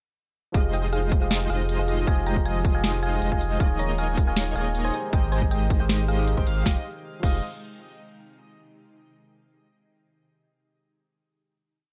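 Set in a digital ambience, this dreamy, emotional future bass piece in F minor runs at 157 BPM with a half-time feel, its drop driven by a hard-clipped, up-front electronic kick drum, an overdriven trap drum kit with sharp snare, crisp hats, crash and hat rolls, a deep saturated sub bass, a huge sidechain-pumped supersaw throbbing with syncopated pushes, a gritty overdriven tine electric piano heard through a combo amp, a round thumb-piano-like FM synth pluck carrying a repeating melody in thirds and sixths with chorus and tape echo, a soft, chorused airy dreamy lead playing arpeggios in the background, and a very quiet ethereal airy pad entering at 2.3 seconds, before the piece lands on a closing Fm7 chord at 6.7 seconds.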